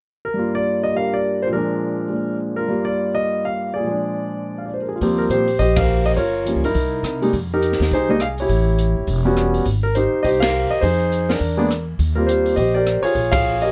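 An intimate concert grand piano opens alone at 0.2 seconds, carrying the melody over Gm7 and Bb7 harmony in this relaxed, swinging jazz piano trio excerpt in Eb major at a brisk 206 BPM, its up-front sound showing audible action noise and long sustain. At 5.0 seconds a woody, growly pizzicato upright bass and an open drum kit from a small room join, the kit heard through dark cymbals, a boomy kick, hi-hat, rim click and snare, as richer chords such as C7#9, A13 and Abmaj9 pass by. The trio hits band accents, with the last at 13.3 seconds, all under a light reverb.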